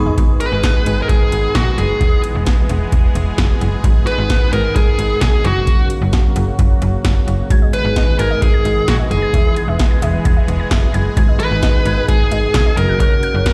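Heard through a big sound system in a bare stone room, this melancholic, nocturnal synth-pop excerpt at 131 BPM in G# minor opens on a fill from an up-front electro analog drum machine with deep kick, punchy snare and metallic hats, over a snappy, digital FM slap bass and an airy, evolving sawtooth pad with chorus, while a dark, overdriven lead guitar carries the melody with delay and a lo-fi, warbling pluck with chorus and delay returns for background arpeggios at 7.5 s, over chords of G#m, E and F#.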